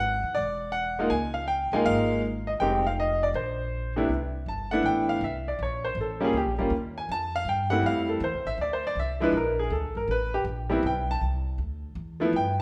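This jazz piano trio excerpt swings at 160 BPM in 4/4, with a swinging, warm mood. A clear grand piano carries the melody from C3 to A5, its intimate, natural tone sitting up front with audible action noise from the instrument. An acoustic upright bass, plucked pizzicato on steel strings, holds the low end from E1 to G2 with a woody, thumpy sound that also sits close. Both play throughout the 12.6 seconds, and the piano takes a solo from 4.1 seconds onward over shifting chords such as Cmaj13, Eb7, Am9 and Dsus2. The players were captured live together in one room, bathed in a wet large-studio reverb that lends the sound a roomy glow.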